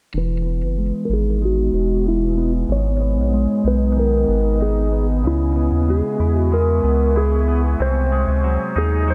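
Dreamy and ethereal, this dream pop excerpt moves in a straight 4/4 over a chord cycle of Emaj7, G#m, C#m7 and G#7/B#. A round analog bass sits up front from 0.1 seconds, deep and dark. Alongside it, a bright, twangy twelve-string electric guitar picks arpeggios through subtle chorus, a low-pass filter and dub echo. At 0.2 seconds a clean lap steel guitar enters with the melody, its slide tone shadowy and compressed, softened by a low-pass filter and trailed by dub echo. A granular cloud pad joins at 1.4 seconds with blurred, evolving sustained chords bathed in their own built-in reverb and a low-pass filter. A filter sweep runs across the whole passage, and the light reverb and echo-heavy mix give the fragment a drifting, hazy space.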